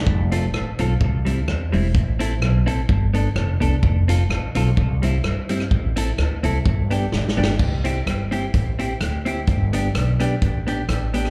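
Ska at 128 BPM in C major with a light swing, upbeat and joyful, this live club excerpt heard through the venue's PA features a woody, thumpy pizzicato upright bass up front, a natural swinging big-band drum kit with a punchy kick, medium-tuned snare, rim clicks, hi-hat and crash, and a clean, compressed picked electric guitar colored by subtle chorus, slapback and dub echo, moving through F, C, Am and G before a drum fill at 7.1 seconds leads into a new section at 7.6 seconds.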